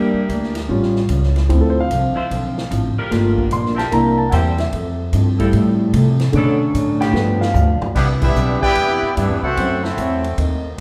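Joyful and swinging, this big band jazz excerpt at 149 BPM opens with an intimate grand piano solo carrying audible action noise over a woody, growly pizzicato upright bass, a dark, boxy picked acoustic guitar in the background, sustained chords from a bright, vintage saxophone section and a distant, roomy drum kit whose fill at 7.1 seconds leads into clear trumpets on the melody and a brilliant trombone section on the second line from 8.0 seconds, with the band captured live in one reverberant room.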